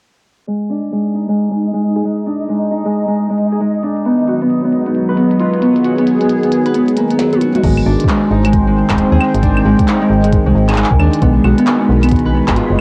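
Fingerpicked Celtic harp arpeggios open this intricate, playful IDM excerpt at 134 BPM in 4/4 with a swung sixteenth-note feel. The harp rings up front, but a filter sweep and a vintage 12-bit sampler grit, cassette tape and tape echo roughen its acoustic tone. A glitchy, overdriven drum kit of tiny snare, clicky hats, claves, handclaps, toms and crash cymbal sits beside it, while a bright, bubbling stepped-filter texture with resonant sawtooth tone, chorus and built-in reverb drifts in at 0.8 seconds and drops out at 7.6 seconds. A smooth, detuned sawtooth pad with a moving notch and chorus joins up front at 4.1 seconds, holding sustained chords with a soft attack that move from Ab5 toward B6. After a drum fill, the second section at 7.6 seconds brings in a metallic, mellow FM bass with a fast attack and decaying notes, and a soft overdriven kick drum in the background, as the harmony shifts to Abmaj7. 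The whole piece carries the dusty, tight feel of a home cassette recording in a small, wet booth.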